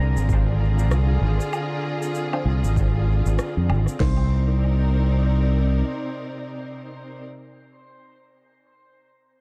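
This hazy, spacious ambient dub excerpt opens with a lush, bowed string section holding distant, smooth chords in C minor, while a twangy pedal steel guitar plays dub-echoed arpeggios in the background and a punchy, up-front fingered electric bass anchors the low end. Within the first second a deep house drum kit arrives with a punchy kick, fat snare and crash cymbal in a small room, alongside an overdriven electronic layer of cabasa, rim click and woodblock that carries its own dub echo. The groove sits at 97 BPM in 4/4 with a 60% swing on the sixteenths, moving from a Dm7b5 chord to Cm7 at 4.0 seconds, with both percussion parts dropping away by 4.2 seconds. A very quiet, muted dub chord stab with a sawtooth, detuned character, a filter pluck with a fast attack and a phaser drifts in at 2.3 seconds and lingers to the close. The bass stops at 5.8 seconds, leaving the vibrato-rich strings, the clean, compressed pedal steel and the mellow stab to finish inside a dark, warm digital ambience.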